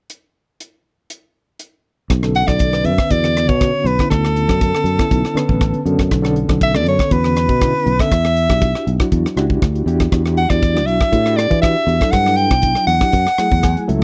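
A crisp drum kit of hi-hat, tight kick and rim click opens this nocturnal, intense electric jazz fusion excerpt alone. From 2.1 seconds a growly, punchy fretless bass enters, followed closely by a reedy electric piano with fast tremolo that adds brief fills and a breathy soprano saxophone solo with vibrato and slapback echo, all moving over minor ninth chords in a dry, close 1970s-style studio recording.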